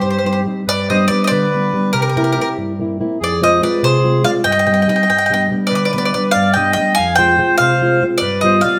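A wet, large-room reverb surrounds this live-in-one-room performance, a short cut from a longer romantic and passionate Italian folk serenade in 6/8 at 96 BPM (dotted quarters) with a straight feel. Up front, a bright, picked bowl-back mandolin carries the melody on its double strings, while a reedy, dark accordion with slow beating sings a smooth second line beneath it. A small, thumb-plucked nylon-string guitar, also up front, supplies the low accompaniment, its finger squeaks audible, as the harmony moves through Cm, G, C7 and Fm before closing on G7.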